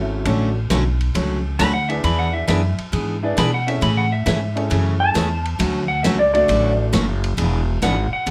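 A dark, clean lap steel guitar plays a second line with fingerpicks and slide, sitting up front across this playful, swinging western swing country clip, cut from a longer piece. A thumpy upright bass on gut strings plucks the low end, and a bright, full-bodied dreadnought acoustic guitar enters at 0.3 seconds with picked accompaniment, along with a big-band drum kit. The kit sits mid-forward with a boomy kick, medium-tuned snare, hi-hat and ride cymbal, its top end rolled off. A clear, woody upright piano fills in the accompaniment from the start and drops out at 6.9 seconds. The harmony moves through Dmaj7, E7, Amaj7 and back to Dmaj7 before landing on E9, all set in a moderate club reverb.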